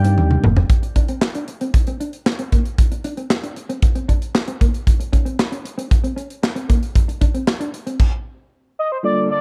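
Early-eighties boogie funk at 115 BPM in a straight 4/4, this short cut from a longer piece has a late-night, danceable mood and a dark production with little reverb. A modern studio drum kit, acoustic and polished with a punchy kick, medium-tuned snare, hi-hat, handclaps, toms and crash cymbal, sits up front and opens with a fill between 0.2 and 0.7 seconds. A snappy FM bass with a metallic attack appears only at the very start, while a mellow electric guitar, clean, fingered and compressed with an ensemble chorus, plays a riff alongside the drums until both stop around 8.0 seconds. In the opening moments, over a Cm9 chord, a smooth sawtooth synth lead with chorus and vibrato briefly carries the melody, joined by a clean tine electric piano heard through its built-in speakers. The harmony then moves through Bbadd9, Csus2 and Bbmadd9. Tucked in the background at the start, a brassy, warbling analog pad with a detuned, vintage character sustains chords. 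After the stop, the lead returns at 8.8 seconds, followed by the electric piano and pad around 9.0 seconds.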